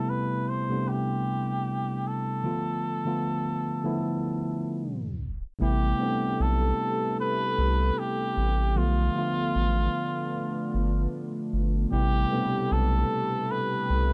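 Nostalgic and reflective, this lo-fi hip hop excerpt opens with a breathy, veiled cup-muted trumpet melody over a mellow tine electric piano colored by cassette tape, all under a filter sweep, until a tape stop at 4.8 seconds gives way at 5.6 seconds to a round, deep analog bass up front and a moody, detuned pad with chorus beneath the Am9 and Bm7b5 changes, all in a moderate studio ambience.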